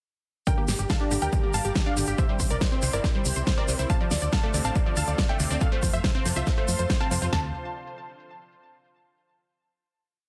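Euphoric and emotional, this short uplifting trance piece in D minor drives at 140 BPM in a straight 4/4, launching straight into a drop at 0.5 seconds over a Gm, C, Dm7 and F progression. The lead is a lush, detuned sawtooth unison pluck playing a bright repeating sixteenth-note riff over a pedal note in thirds and sixths, with delay and sidechain pumping, while a dark, very quiet baby grand piano doubles that anthem line in unison. Beneath it, an analog pluck cycles an eight-step arpeggio with chorus, delay and pumping, and a silky, string-like analog pad holds sustained chords in the background through ensemble chorus. The solid FM bass arrives at 0.7 seconds with a galloping, up-front sixteenth-note pattern that pumps against the four-on-the-floor kick of a punchy analog drum machine with toms, layered with a big-room kit's huge snare and crisp programmed hats, while a grainy tube shaker adds hand-played sixteenths. 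Light reverb and a dense, heavily limited modern master keep the sound tight, and the piece settles on a closing Dm7 chord at 7.3 seconds.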